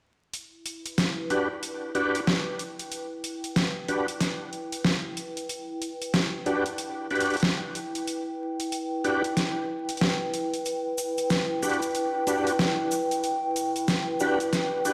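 Gritty and funky, this glitch hop passage is cut from a longer piece and rides a swung sixteenth-note feel in 4/4 over a single Em9 chord. An overdriven electronic drum kit sits up front, its deep snare and bright hi-hats layered and produced with a crunchy edge from 0.3 seconds. A warbling, nostalgic pad enters at 0.7 seconds, its detuned, wave-folded square and triangle tones swelling in slowly and sustaining with chorus and its own built-in reverb for a dark, vintage lo-fi haze. From 1.3 seconds an overdriven tonewheel organ plays thick, full stabs up front, carrying key click, chorus vibrato, a slow rotary speaker, a low-pass filter and digital delay. A grainy acoustic cabasa joins in the background at 10.7 seconds. The whole mix sounds as if played on a big sound system in a bare stone room, with a moderate lush hall reverb and a layer of vinyl crackle.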